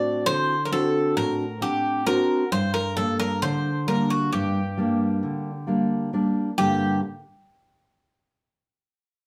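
The recording has the wet bloom of a small room, heard from a little further back. This is a short cut from a longer Greek folk piece for a bouzouki band: wistful and shadowy, moving in a straight 9/8. The bouzouki carries the melody with a bright, metallic, picked tone, its double strings and some octave-doubled courses giving each note a shimmering edge. Beneath it, a fingerpicked steel-string acoustic guitar provides a dark, full-bodied accompaniment, with the occasional finger squeak audible on the strings. The harmony rests on D7 before settling onto G minor at 2.5 seconds. The music turns into a new section at 6.6 seconds, and both instruments play on until 7.0 seconds.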